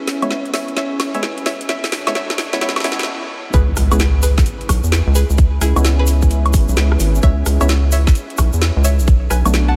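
A rubbery, up-front square bass and tight electronic kick drop in at 3.5 seconds to drive this moody, skippy two-step garage excerpt at 130 BPM in C# phrygian. A twangy resonator pluck melody, hollow percussive organ stabs with tape echo, a silky string machine, a warbling tape-like pad and a garage kit with woody snare and metallic hats carry the filtered build-up and brief stop over C#m7 and Bm7 chords, with the pad dropping out at 3.1 seconds, while a grainy egg shaker and a very quiet impact join at the drop.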